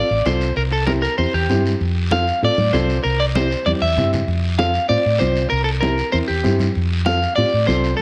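A bright, twangy electric guitar at the edge of break-up carries the melody up front, its picked notes wrapped in spring reverb, in this joyful, danceable cumbia excerpt in F major at 194 BPM. A round, amped hollow-body fingered bass sits forward beneath a dark, woody upright piano, while soft-handed, ringing congas stay in the background and a raspy guiro joins from 0.3 seconds. The harmony moves between F, C and C7, with a fill at 3.7 seconds, all captured with close, detailed microphones and light reverb.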